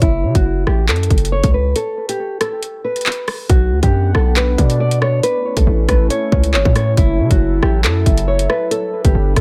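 Tense and dark, this half-time drill excerpt at 138 BPM in B minor sets a fingerpicked nylon-string guitar melody, low-pass filtered and delayed with audible finger squeak, over a punchy, heavy 808-style bass and an up-front electronic drum kit of hard-clipped kick, metallic hi-hats, handclaps and rim clicks, with a brief break from 1.8 seconds, a warbling, nostalgic lo-fi pad arriving at 3.9 seconds, and a soft, round octave-layered synth lead with phaser and vibrato sitting in the background from 4.6 seconds, in a dry yet echo-heavy mix.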